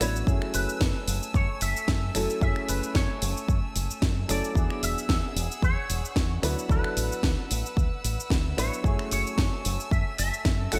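A lightly swung 16th-note groove at 112 BPM in 4/4 drives this sensual, cosmic nu-disco excerpt in F# minor, with a punchy, up-front electronic kick arriving at 0.3 s beneath a house kit of finger snaps, shaker, hi-hat and a cracking snare dressed in gated reverb. A round, envelope-filtered fingered bass, a dark, mellow grand piano with lush chorus and a bowed, sul tasto violin section holding sustained chords each carry sidechain pumping, moving through F#m9, E9 and D69. On top, a clean, twangy electric guitar with an envelope filter carries the melody through ensemble chorus and digital delay, set in a bright 1980s-style digital production with light ambience.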